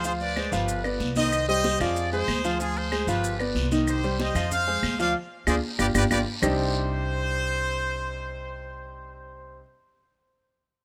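A bright, tight trumpet section with light vibrato leads this driving, danceable salsa fragment at 188 BPM in C harmonic minor, up front with a warm, polished baby grand piano and a growly, thumpy pizzicato upright bass over high-tuned congas, a raspy distant guiro, grainy maracas and woody claves entering at 0.4 seconds, with a band accent from 5.2 seconds before the percussion stops at 6.5 seconds and the horns, piano and bass carry on to a closing Cmadd9 in a rough home demo mix with light small-room reverb.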